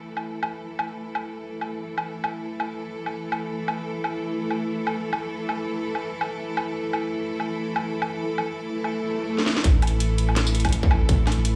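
Half-time drum and bass at 166 BPM, heavy and tense, where a close, intimate cello section sustains softly bowed chords with light vibrato and sidechain pumping over an up-front electronic kit of cracking snare, metallic hats, tambourine and woodblock, until a background swell and a drum fill at 9.4 seconds lead into a drop at 9.6 seconds, bringing in a thick, saturated sub bass and a distorted kick, all within light digital reverb in this cut from a longer piece.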